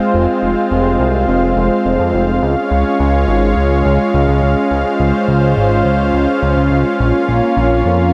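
In a straight 4/4 pulse, this brief synthwave excerpt from a longer piece feels nostalgic yet driving. A smooth, detuned sawtooth pad with a slow attack holds sustained chords from the start, coloured by chorus and shimmer reverb, while a fat, fast-attack bass of sawtooth and square waves with a moving notch enters at 0.1 s, both sitting up front. The harmony moves from Fm to Db at 2.4 s and to Bbm at 7.0 s, all bathed in a moderate, lush hall reverb.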